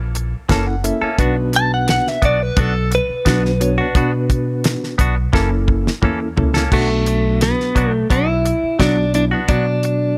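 Smoky, brooding straight-eighth soul blues at 87 BPM in B minor, this brief cut from a longer piece moves between F#7#9 and Bm as a compressed, clean electric guitar picks stabs and a twangy, bright second guitar carries the melody from 1.6 s, over a woody pizzicato upright bass, a dry damped 70s drum kit with a fat snare and tight kick that plays a fill at 5.3 s, and a reedy electric piano whose fast tremolo shimmers through its built-in speakers, all in a close, nearly reverb-free room.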